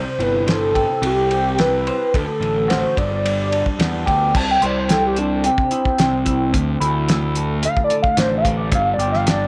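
A hollow, nasal square-wave lead with chorus and tape echo carries the melody from the first moment, over a slightly broken-up guitar riff through a phaser and a round, punchy, fuzzed picked bass with overdrive, while a cloth-damped, thuddy drum kit with a fat snare and dark cymbals joins at 0.2 seconds in this hazy, kaleidoscopic psychedelic rock passage at 109 BPM in 4/4, moving through C, D and G before the analog synth lead takes a solo from 4.3 seconds over C, Dsus2 and G5, all set in a small room with light reverb.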